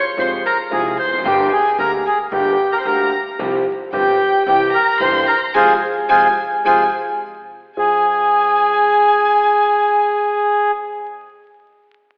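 The rhythm moves in a rubato 4/4 around 111 BPM, giving this short tango in F minor a melancholic, passionate sway as it is cut from a longer piece. A reedy, dark bandoneon carries the melody up front, while a single bowed violin, close and expressive with vibrato, soft attacks and portamento, sings a higher second line above it. A concert grand piano supplies intimate, vintage-toned accompaniment with deep bass and audible action noise, and a thumpy, woody pizzicato upright bass on steel strings sits in the background until it drops out at 8.0 s. The harmony moves from Fm through Gm and Csus4 to C, returns to Fm, and leads into a band accent from 5.6 s to 7.8 s, where a break with the chords held off gives way to a fresh Fm and a new section at 7.8 s. The whole sound is bathed in a wet scoring-stage reverb with the air of a church or concert hall, then filtered through a thin telephone quality and vinyl crackle, so it feels like a warm old record.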